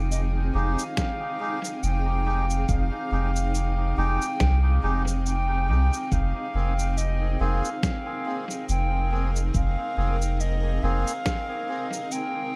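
A loping, swung sixteenth-note groove sets this hazy, spacious ambient dub fragment in motion, cut from a longer piece. An electronic kick drum, deep and tape-warm with a small room reverb, enters at 1.0 seconds beneath a muffled, pitched-down cabasa and snare whose overdriven, compressed grit is smeared by dub echo. A round, soft sub bass sits up front at the bottom, holding the low end until 11.0 seconds. Above it a granular cloud pad drifts in sustained chords, its blurred, detuned shimmer evolving inside its own built-in reverb, while reedy, nasal melodica stabs trail off into dub echo. An airy wooden flute carries the melody in a high, narrow range, its straight tone and rolled-off highs repeating through echo, as the harmony moves from Fm7 to Abadd9/F at 6.1 seconds, all set in a light digital ambience.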